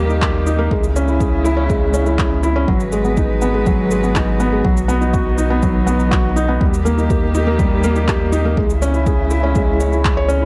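Piano and strings electronica at 122 BPM in 4/4 with a straight feel, intimate and melancholic, moving through D#, C#m, G#m7 and B in this short cut from a longer piece. A felt-muted upright piano sits up front playing a soft, mellow riff with audible action noise and digital delay, over a round, deep analog bass and a dark string quartet whose bowed, sustained chords carry vibrato and portamento, both bass and strings pumping with sidechain. A punchy, overdriven electronic kick drum joins layered, overdriven shaker and handclaps in small room ambience to drive the dark, warm production under light reverb.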